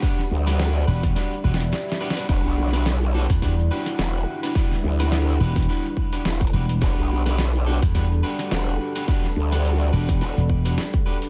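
A dark, moody analog pad on an Em9 chord opens this funky, swaggering glitch hop excerpt, pumping against a punchy, up-front electronic kick, a gritty, pitched-down boom bap kit of hi-hat and snare, a mellow shekere in the background, and slightly broken-up picked electric guitar stabs roughened by 12-bit sampler grit and dub echo. A growling, wobbling bass with chorus and overdrive soon joins, followed shortly by a bright, amped slap bass, both sitting forward in a dry, echo-heavy mix. A drum fill arrives at 1.2 s, a very quiet electronic swell enters at 1.5 s, and the kick briefly drops out from 1.7 s.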